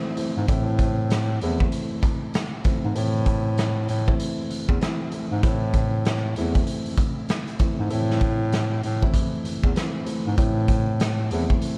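A swung boom-bap hip-hop groove at 97 BPM in A minor drives this moody, tough excerpt, with a raw garage drum kit of hi-hat, boomy kick, rim click and medium-tuned snare sitting up front with gritty, saturated 12-bit sampler crunch in a bright stone room, while a clear bass clarinet enters at 0.4 seconds with jazz-style vibrato in its low register and a dark baby grand piano, mellow and intimate with audible action noise and long sustain, is filtered through cassette tape on an Am chord, all in an echo-heavy mix touched with vinyl crackle and light small-room reverb.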